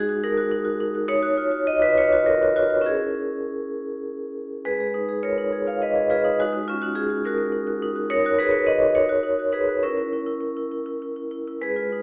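Contemporary classical music for solo vibraphone, this hypnotic, flowing 12-second fragment of a longer piece moves in a rubato 6/8 at about 68 BPM in G# minor. The medium mallets draw a dark, metallic, ringing tone with a fast motor vibrato from G#3 to E#5, sitting smooth and up front through chords like D#m9, C#m6 and G#13sus4. At 4.6 s it shifts into a new section, all heard from further back in a wet recital hall with a thin, telephone-like sound.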